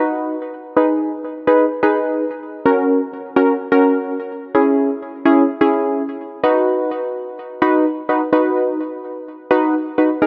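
A moderate plate reverb with a long tail surrounds this short pop passage, cut from a longer piece, with a cool, driving mood and a straight four-four pulse. A single set of analog keys plays alone and up front throughout, its round, detuned sawtooth tone shaped by a filter sweep, a fast attack and a decaying body, and thickened with chorus and delay. The chords move from B through G#m, F# and C#m before returning to B at 6.4 seconds, where a new section begins and runs to 10.3 seconds.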